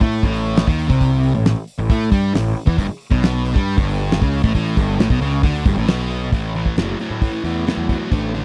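A straight, driving 4/4 groove from a dry, damped 70s drum kit with a fat snare and tight kick powers this confident classic rock passage, cut from a longer piece, as a sludgy, double-tracked overdriven guitar riff moves from A5 to G5 and back to A5 at 6.3 s over a punchy, fuzz-soaked picked electric bass, with drums, guitar and bass all sitting up front in a close, 1970s-style studio sound with little reverb.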